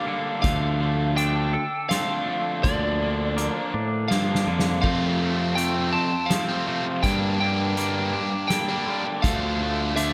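The recording sits in a big arena sound with a moderate concert hall reverb, giving this short cut from a longer post-rock piece a soaring, euphoric sweep at 82 BPM in 3/4. A slightly broken-up lead guitar carries the melody between D5 and A5 with slapback echo, while a twangy, clean electric guitar plays arpeggios in the background and a crunchy overdriven guitar drives a riff, both also touched with slapback. From 0.4 seconds a fuzzy, up-front picked bass and a distant, roomy drum kit played with soft mallets join in, the kit using crash cymbal, hi-hat, a punchy kick and a medium-tuned snare. A drum fill leads into the entry of a tight distorted guitar riff at 4.8 seconds, thickening the bright guitar layers. The harmony moves through Dm7, Bb/D, F and Gm before arriving on Dm.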